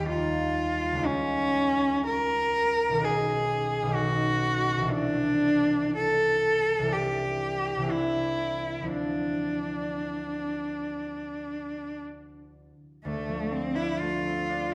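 A single bowed cello, rich and focused with vibrato, sings the melody from the first moment over a bright, ringing fingerpicked concert harp, both placed up front in this mysterious, hazy impressionist duo. The pulse breathes freely in rubato, and the harmony drifts through add9 chords before settling on Dm7 at 8.9 seconds. A wet recital hall reverb surrounds the pair until the fragment breaks off at 14.7 seconds.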